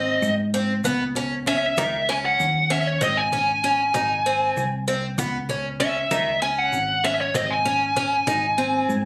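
Intricate and tense, this progressive instrumental moves in an uneven 7/8 metre with a straight feel, and it is cut from a longer piece. A dark, compressed fuzz lead guitar takes a solo up front for the whole stretch, playing a distorted melody. Beside it, a picked twelve-string acoustic guitar plays bright, shimmering, octave-doubled arpeggios with a boxy parlour tone, fresh strings and audible finger squeak, while a round, amped hollow-body short-scale bass anchors the low end. Further back, a woody cajon played with soft hands and faint snares joins at 0.2 seconds alongside a grainy, saturated egg shaker. The harmony shifts between G# and C#madd9, and the whole band sounds as if caught on a phone in the room, with a light club reverb around it.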